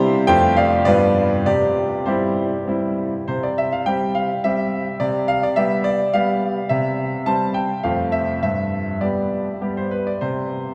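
A bright grand piano rings out in a cathedral-like space, its notes trailing into a long, wet reverberation of about 6.4 seconds, as if captured in a church or concert hall. This short excerpt, cut from a longer classical-period sonatina in C major, moves at roughly 98-107 BPM in 3/4 time with a supple, rubato feel. The solo piano sits up front, its tone brilliant and smooth with a slightly vintage character and long sustain, spanning from F2 up to A5. The harmony stays simple and graceful, moving from F through G7 to C, and the opening phrase is restated from 3.3 seconds. Later it settles on C again before passing through F and G, and the music breaks off at 10.7 seconds. The mood is elegant and cheerful throughout.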